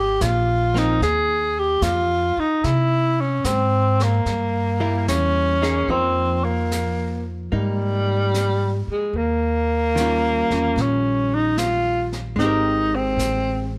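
A swung 4/4 pulse carries this smoky, intimate jazz ballad fragment, where a breathy, subtoned tenor saxophone with vibrato and scooped notes sings the melody up front over woody pizzicato upright bass on gut strings, a dark, clean hollow-body archtop guitar accompanying from 0.7 seconds, and distant, roomy brushes on a high-tuned snare and hi-hat, set in light reverb.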